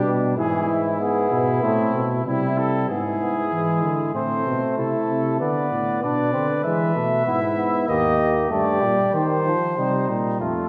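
A mellow trumpet with light vibrato carries the melody up front from the very start of this solemn, contemplative brass canzona at 96 BPM in 4/4, joined throughout by a smooth-topped flugelhorn on the second line, a clear, distant and roomy euphonium with light vibrato in accompaniment, and a bass trombone, also up front, anchoring the low end, the ensemble bathed in a wet hall reverb as the harmony moves between Am and E/G# before turning to Eb near 7.9 seconds and Cm/Eb near 9.1 seconds in this fragment cut from a longer piece.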